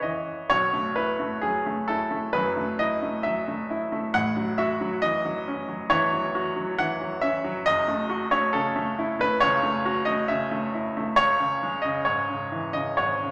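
A bright, woody upright piano plays alone from the first moment in this wistful, melancholic classical excerpt, a lyrical solo at 68 BPM in 4/4 with a rubato feel, its up-front, short-sustain tone spanning F#1 to F#5 within a wet recital hall reverb as the harmony drifts from C#m through B7sus4, A6 and F#m7 before returning to C#m at 11.2 seconds.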